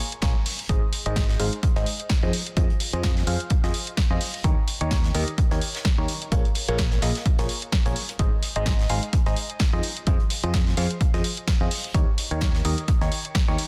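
A biting, warbling FM electric piano riff with phaser, tape echo, low-pass filter and sidechain pumping leads this uplifting, joyful piano house cut at 128 BPM in Ab major, carried by an up-front punchy electronic kick, a bright fingered electric bass that also pumps, a punchy analog drum machine on hi-hat and snare, and a very quiet vintage brush kit with a high-tuned snare, all in a dry, dense, heavily limited modern mix cycling through Bbm7, Ab, Fm7 and Eb7.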